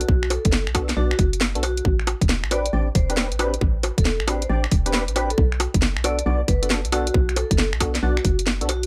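A dry, intimate-sounding excerpt of late-night, soulful two-step UK garage at 136 BPM with a heavy 16th-note swing, where a bouncy, tube-saturated FM bass knocks hollowly up front beneath a tight electronic kick and a garage kit of cracking snare, finger snaps, bongos and warm hi-hat, while a nasal, chorused organ stab with dub echo enters at 0.7 s and a metallic, ringing vintage vibraphone carries the dub-echoed melody over Bm7 and Am11 chords.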